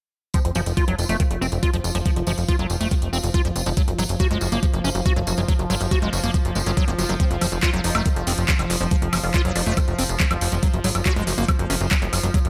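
Psychedelic trance with a hypnotic pull, built on an overdriven, knocking electronic kick up front, a layered garage kit of handclaps, metallic hats and woodblock, jingly tambourine, and a punchy, funky analog bass, while a squelchy, chorused acid bass riff with a resonant filter sweep and digital delay rides over a bubbling stepped-filter texture with slow-attack sustained chords in the background, and a juicy, detuned blip pluck with phaser and delay appears only briefly, from 0.3 to 2.2 and 7.2 to 9.9 seconds, in this excerpt from a longer piece.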